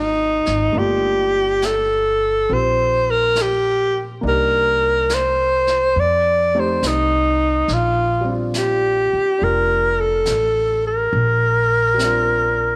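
A breathy alto saxophone carries the melody up front in this late-night jazz ballad, its clear subtone shaded with vibrato in a soloist's jazz style. Behind it, a concert grand piano sits in the background with a natural, intimate tone, deep bass, short sustain and audible action noise. The upright bass is played pizzicato, sounding woody and dark on steel strings. From 0.5 seconds a jazz drum kit joins on brushes, distant and roomy, with brushed snare and hi-hat on a medium-tuned snare. Swung eighths in 4/4 carry the harmony from Ab13 through Gm9, Cm9 and F9 to Bb6, set in a light small-room reverb, in a passage cut from a longer piece.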